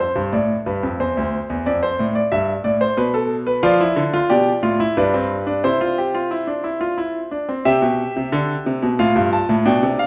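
A clear concert grand piano opens this elegant, stately excerpt of a baroque-style three-part fugue in triple metre, its smooth, vintage tone sitting up front with a deep bass that reaches down to D2. The solo piano plays throughout and moves into a new section at 7.7 s. A wet recital hall reverb surrounds the instrument and lends the counterpoint a dignified, spacious glow.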